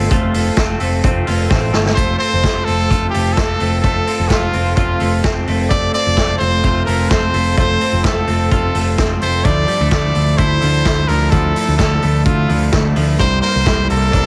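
Jangly indie pop with a bright, youthful mood, where a twangy twelve-string electric guitar rings out clean arpeggios over a slightly broken-up lo-fi guitar, a round, dark picked bass and a gritty, punchy vintage drum kit, whose fill at 1.5 seconds ushers in a brilliant, up-front trumpet melody, all under light reverb and a heavily compressed radio sound in an excerpt cut from a longer piece.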